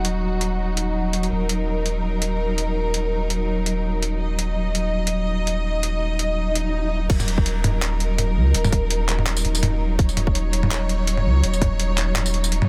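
Lightly reverberant and up front, this tense, dark half-time drum and bass cut in Eb minor moves at 166 BPM with a swung feel, as lush bowed strings sustain smooth chords with vibrato under sidechain pumping, while a thick, saturated sub bass holds the low end. A gritty, overdriven sampler-style drum kit with a small-room character carries crash, handclaps, hi-hat, tambourine and toms throughout. An electronic swell rises from 6.5 seconds into the drop at 7.1 seconds, where a tight, layered, overdriven electronic kick enters and plays until 11.7 seconds.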